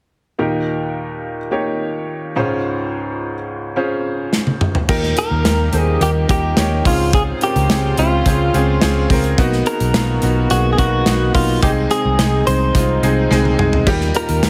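Anthemic and uplifting, this piano-driven pop passage opens on a bright, woody upright piano with audible action noise, before a drum fill at 4.3 seconds brings in a tight, up-front acoustic kit. From 4.9 seconds a round, foam-muted vintage bass and a very quiet, floating string section join, and a clean, direct-recorded electric guitar carries the melody from 5.2 seconds. The mix is heavily compressed for a radio-ready sound, set in a large studio reverb, with the chords moving from Eb through Dbmaj7, Bmaj7 and Ab/C before a second drum fill leads back to Eb.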